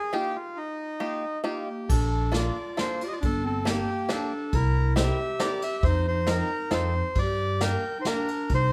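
A reedy, boxy bandoneon opens this nostalgic, charming musette waltz in a loose rubato three, joined almost at once by a bright, twangy banjo played with fingerpicks before a brief break. A close-miked clarinet in classical style slips in as a second line at 1.5 seconds, colored by slapback echo, and at 1.9 seconds a woody pizzicato upright bass arrives up front alongside a distant, roomy brush kit with dark cymbals and a punchy kick. Light reverb frames the passage as the chords move from Ebadd9 through Bbmaj7, C7 and F7 to rest on Gm, a fragment cut from a longer piece.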